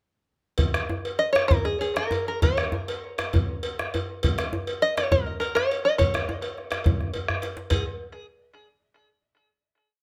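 West African traditional drum ensemble music in 12/8, festive and powerful, that pushes forward from about 130 to 148 BPM (counted in dotted quarters) as it speeds up over its short length. A round, up-front bombo and a distant, metallic cowbell bell pattern start at 0.6 s with a close, dry, medium-tuned djembe played with soft hands, and an up-front open-back banjo joins at 1.2 s with mellow, twangy, plunky fingerpicked call phrases touched by tape echo. A drum fill at 7.0 s leads into a final note that rings until 9.4 s in a moderate studio reverb.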